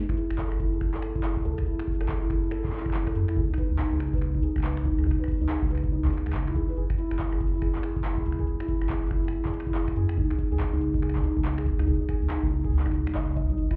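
A felt-muted upright piano, dark and boxy with audible action noise, plays arpeggios through a low-pass filter sweep and tape echo in this cerebral, eerie IDM excerpt at 141 BPM in F# minor, swung on the sixteenths. Beneath it, a round sine sub bass with tube saturation carries the low end, while an overdriven electronic kick and a booming analog drum machine of finger snaps, handclaps and metallic hi-hat, both re-recorded in a small room, drive the beat. The mix sounds muffled, as if heard through a wall into a club, over chords moving from F#m9 to C#7sus2, F#sus2 and C#sus2.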